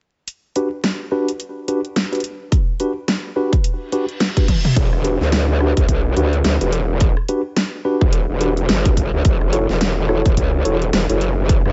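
Playful and funky, this swung glitch hop cut opens with a layered dubstep kit of hi-hat, rim click, huge snare and toms alongside mellow, clean electric piano stabs pumping through a low-pass filter and digital delay, then a punchy electronic kick joins at 2.5 s, a reverse cymbal and drum fill lead into a growling, wobbling, saturated bass with chorus at 4.8 s, and the whole dry mix carries a lo-fi vinyl crackle.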